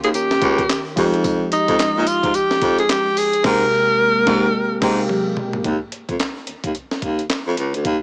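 Slick and confident, this new jack swing excerpt at 109 BPM pairs a clear, forceful tenor saxophone melody with vibrato against round, chorused analog keys moving through Eb7, Fm9 and Abmaj9, a subtone baritone saxophone carrying the bass, and a gritty, pitched-up sampler-style breakbeat kit with a thumpy kick, handclaps and tambourine, all in light reverb with a small speaker sound, as the band accents from 3.4 s, a drum fill arrives at 5.1 s, and after 5.7 s only the baritone and drums carry on.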